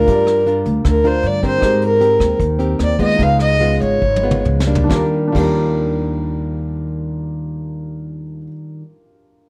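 A dark, woody fiddle opens this breezy, relaxed bossa nova fragment, bowed by a single player with light vibrato and set up front over fingerpicked classical nylon-string guitar, a baby grand piano with a natural, short-sustained tone, and a pizzicato upright bass with steel strings. A vintage kit played with brushes joins at 0.1 s, its high-tuned snare, tight kick, rim clicks, hi-hat, toms and crash sounding small-roomed and rolled-off at the top. The fiddle solo moves through Gm7, Abmaj9 and Db7 as the pulse slows down, and a drum fill arrives before the fiddle falls away at 4.4 s. A second section settles on Ebmaj7 at 4.9 s, carried by the up-front guitar, the bass and the warm piano, with the drums dropping out shortly after. A moderate studio reverb gives the ensemble a gentle sense of space, and the piece is cut from a longer performance.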